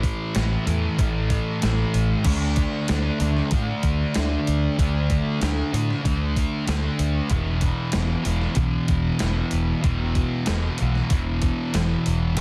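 Shoegaze and dream pop rock at 95 BPM in a straight 4/4, hazy and wistful, built on a thick, double-tracked fuzz guitar riff that sits up front, dark and distorted with a lush chorus, moving through A5, D5 and E5 power chords. Beneath it a vintage foam-muted fingered electric bass gives a round, punchy low end, while an overdriven gated 80s digital drum machine supplies a thumpy kick, hi-hat, crash cymbal and a snare drenched in gated reverb. The 12.4-second cut sits in a digital ambience with a dense, heavily limited modern master.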